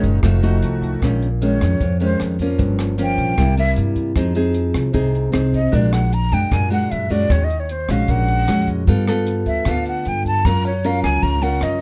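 A soft, shimmering pipe organ celeste colours the opening of this intimate, wistful bossa nova excerpt in Bb minor at 153 BPM, sounding only until 1.0 seconds beneath the fingerpicked nylon-string guitar, woody pizzicato upright bass and a compact cocktail kit of hi-hat, rim click and punchy kick. From 1.0 seconds a breathy, up-front jazz flute takes a solo with vibrato and a soft attack, singing over chords such as Bbm7, C7, Ebm11 and Gbmaj7. The production is dark and warm with light reverb, the small-room drums smooth and rolled-off on top.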